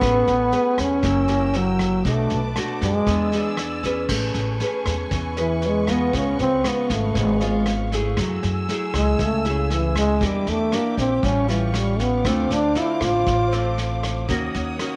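Bossa nova at 118 BPM in A major, breezy and romantic, where a mellow, close-miked trombone carries the melody with vibrato and takes an up-front jazz solo from 4.1 s until it stops at 13.8 s, over fingerpicked classical nylon-string guitar with audible finger squeak, woody, growly pizzicato upright bass, a vintage brush kit with dark cymbals and a punchy kick, and a lush, bowed symphonic string section holding smooth sustained chords, all set in a small room with moderate spring reverb in this excerpt.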